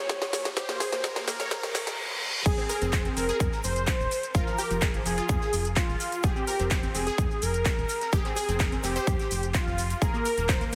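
With a heavily compressed, radio-like sound, light reverb and digital ambience, this driving, emotional progressive house cut opens on a 2.5-second build-up where a background riser and reverse cymbal, a drum fill and a filter sweep gather beneath a velvety, chorused synth lead melody and lush, phased unison pluck arpeggios, both pumping and trailed by digital delay. A punchy, tape-warm electronic kick, re-recorded in a large room, sits up front alongside a house kit of cracking snare, metallic hats, handclaps, cabasa and crash. At the drop at 2.5 seconds, a smooth background supersaw second line and a round, deep, dark analog bass join, with a very quiet big-room acoustic rock kit of snare, hi-hat and shaker adding depth under the Fmadd9 harmony.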